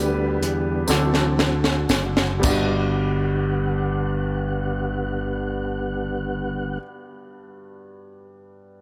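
A small-room sound with light reverb frames this reverent, jubilant slow gospel excerpt in G major and 6/8 at 35-46 BPM, which slows through its opening as a crisp fusion kit with a high-tuned snare and tight kick plays a drum fill from 0.9 to 2.4 seconds beside a jingly tambourine, while a growly, punchy slap bass through an envelope filter and a soft, flute-like tonewheel organ with fast rotary speaker and chorus vibrato hold until 6.8 seconds, and a warm, deep-voiced concert grand piano accompanies throughout, continuing to 8.8 seconds, as the harmony moves from G/D and D7 to Gmaj7.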